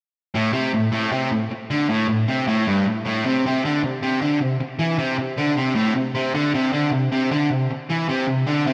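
A dark, overdriven electric guitar, picked and double-tracked up front, drives an aggressive, menacing rock riff in 4/4 from 0.3 to 8.7 seconds, its low range sitting in a lush hall reverb that gives this cut from a longer piece a big arena sound.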